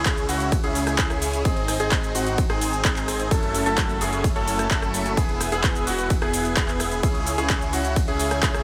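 Festival progressive house at 129 BPM in C# minor, anthemic and euphoric, where a huge, phased supersaw riff sits up front over a brilliant grand piano's arpeggios with tape echo, a thick, chorused detuned saw bass, and an overdriven, punchy electronic kick with a big-room kit of metallic hats, handclaps, cabasa, ride and rim click, the lead, piano and bass pumping through a C#m–G#–F#m7–E progression in this brief excerpt under light reverb.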